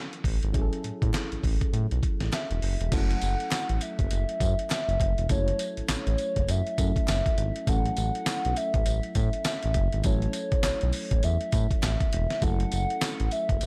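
A swung 101 BPM new jack swing groove in A major sets a bouncy, flirty R&B mood, with a gritty, thumpy sampler-style drum kit up front carrying overdrive and gated reverb, a smooth sawtooth synth bass from 0.2 seconds, a soft, round FM electric piano with chorus on the A6 and F#m7 chords, a very quiet group handclap from 1.1 seconds, and a hollow, woody clarinet-like synth lead with chorus, phaser and vibrato entering at 2.3 seconds, all in a dry mix cut from a longer piece.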